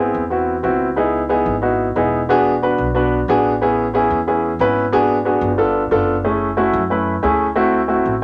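A grand piano and a pizzicato upright bass open together in this driving, sultry Afro-Cuban jazz fragment, moving at a brisk 182 BPM in straight 4/4 in C# minor. The piano sits up front with a natural, warm tone, accompanying through lush extended harmony that runs from C#m9 through Amaj9 to F#m9 and D9. Beneath it the acoustic bass adds a woody, dark low end, and the pair sound together in a small room with a noticeably wet reverb until about 8 seconds.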